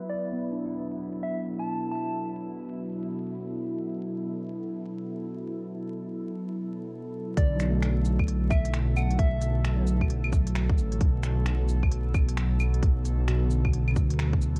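This ghostly, melancholic future garage excerpt opens on a warbling, nostalgic tape-like pad and a barky, overdriven tine electric piano set back in the mix, both pumping under sidechain compression, with the piano trailing analog delay and the pad bathed in chorus and its own reverb. A very quiet, breathy wind-like noise texture hovers beneath them while a filter sweep runs through the opening stretch, and a round, gentle, keys-like synth lead with chorus, vibrato and delay sounds a brief phrase over a Dadd9/B chord. At 7.4 seconds the wind texture drops away and the harmony settles on Bm7 as a deep, rumbling detuned saw bass arrives up front, thickened by tube saturation and pumping with the pulse. A tight, tape-flavoured electronic kick joins alongside an organic electronic kit of cabasa, claves, finger snaps and crisp hi-hats, its percussion softened by low-pass filtering and a small-room sound, all riding a swung groove. 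The lead returns briefly over this fuller texture, and the dark, warm production is wrapped in vinyl crackle and light reverb.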